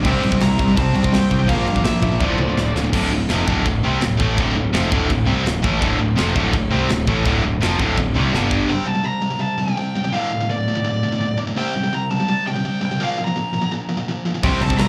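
Heavy and dark, this cut from a longer heavy metal piece in D minor charges at 167 BPM in straight 4/4. It sounds like a live club gig heard through the venue's PA with light reverb. An up-front, bright high-gain guitar riff with slapback echo runs throughout, joined by a background high-gain riff guitar, a very quiet double-tracked distorted guitar, a growly fuzz-and-overdrive picked bass, and a tight kit of china, crash, kick, snare and toms that punches out fills. A dark lead guitar carries the melody with slapback echo and digital delay, shadowed early on by a background second lead line, and from 8.7 s it rides over the lone front riff until the full band crashes back at 14.4 s.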